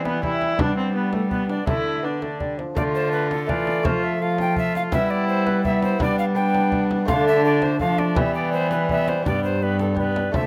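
An up-front, nasal cello with gut-string tone anchors the bass of this courtly, solemn Renaissance-style consort dance in D dorian at 166 BPM in 3/4, beneath an airy alto recorder melody with tongued chiff and vibrato, a warm bowed viola second line, a mellow bassoon with light vibrato, a delicate fingerpicked lute on double gut strings in the background, and a deep, dry frame drum struck with hard hands from 0.1 s, captured in light reverb with close, detailed microphones in a passage cut from a longer piece.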